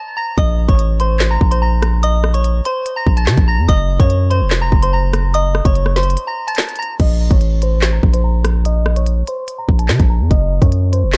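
A half-time drill beat at 145 BPM in Bb harmonic minor, menacing and cold, opens on a soft, pure FM synth bell melody shaped by chorus, phaser, low-pass filter and delay, before an up-front electronic drum kit (hard-clipped kick, woody snare, crisp hats, handclaps, rim clicks and crash) and a deep, sine-toned, long-decaying 808-style bass arrive at 0.4 seconds, moving between Bbm and Gb in a dark, warm digital ambience, with a break at 6.2 seconds and a filter sweep on the bell from 7.0 seconds in this fragment of a longer piece.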